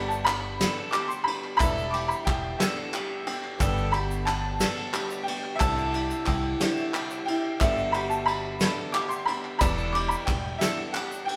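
Uplifting and anthemic, this indie folk passage in 6/8 at 60 BPM in G major sets a bright, slightly detuned upright piano melody over a buzzing kalimba second line, a soft felt-muted piano with audible action noise, a boxy picked ladder-braced acoustic guitar with finger squeak, double-string mandolin arpeggios, a woody pizzicato upright bass that stops at 10.5 s, a grainy tube shaker, hollow group handclaps and an up-front vintage brush kit with dark cymbals, the band heard playing live together in a wet stone room as the chords move through G, Em7 and Cadd9.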